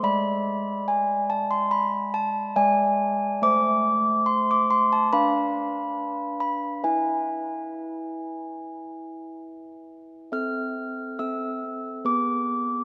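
Classical in character, this short excerpt is a solemn, wintry tune for handbells, moving at an unhurried 70 BPM in a straight 4/4 and tuned slightly below standard pitch, with A at 436 Hz. The handbells play solo for the full 12.8 seconds, spanning from G#3 up to F6, and sit up front with a clear, ringing tone softened by mellow clappers and a slightly vintage, band-limited character. A wet church reverb, lingering for about 3.5 seconds, lets each stroke hang in a spacious, devotional air. The harmony opens on E7/G# and settles onto Am at 3.4 seconds, then passes through a diminished chord toward E at 6.8 seconds before closing on Am/C and G#dim/B. Cut from a longer piece, it feels like a quiet, reverent fragment of a seasonal hymn.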